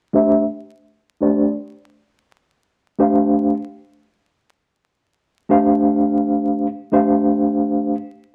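A worn, slightly out-of-tune tine electric piano plays alone and up front from 0.1 to 8.0 seconds, lightly overdriven through a combo amp with a fast tremolo and a filter sweep, moving from Am7 to Dm7. This short, mellow, nocturnal hip hop fragment has a swung sixteenth-note feel and sits in a wet studio reverb under a layer of vinyl crackle.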